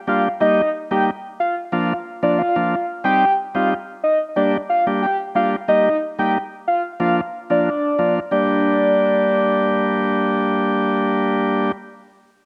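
A soft, octave-layered synth lead carries the melody from the very start, its round, dark tone built from triangle and sine waves with a sub octave underneath, a fast attack, sustained notes and a touch of vibrato, all coloured by chorus, phaser, analog delay and cassette tape grit. Beneath it, a reedy, clean tonewheel organ supplies the accompaniment through a stationary speaker, sitting up front alongside the lead. This tough, bouncy dancehall groove moves in a straight four-to-the-bar feel, cycling through Eb, Bb, Cm and Gm before a shift to a new section at 8.3 s opens on Gm. The lead drops out at 10.3 s, leaving the organ alone until it stops at 11.7 s. A moderate spring reverb and the lo-fi character of a home cassette recording give this short cut from a longer piece a homespun, roomy feel.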